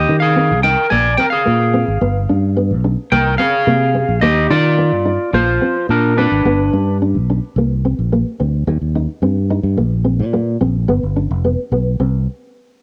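Bittersweet and warm, this short highlife guitar band passage moves at 108 BPM in a straight 4/4 and is cut from a longer piece. A twangy, slightly broken-up electric guitar carries the melody up front, spanning D4 to Ab5 before it drops out at 7.0 seconds. Beneath it, a fingered electric bass with a round, direct, amped tone holds the low end from F1 to Eb3 throughout. A dark, thumb-plucked nylon-string guitar with fresh strings supplies quieter accompaniment in a narrow middle register. The harmony moves through chords such as Eb6, Bb7, G and Abmaj13, and a new section begins at 7.6 seconds with Bbadd9 and Bbsus2 colours, leaving bass and nylon guitar alone together. The sound is a home cassette recording with light reverb and a small room ambience.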